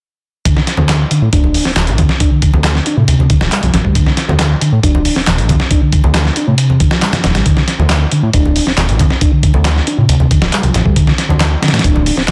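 A straight 4/4 breakbeat drives this gritty, energetic breaks excerpt from 0.5 seconds, built on an up-front, compressed soul sampler-style kit with a thumpy kick and medium-tuned snare, joined shortly after by a fat, nasal, detuned analog bass, electronic analog handclaps and ringing hard-hand congas set back in the mix, while a soft, flute-like tonewheel organ plays a riff over a Dm7 chord through a fast rotary speaker, dub echo and a low-pass filter sweep, all under light reverb and a dense, heavily limited modern master.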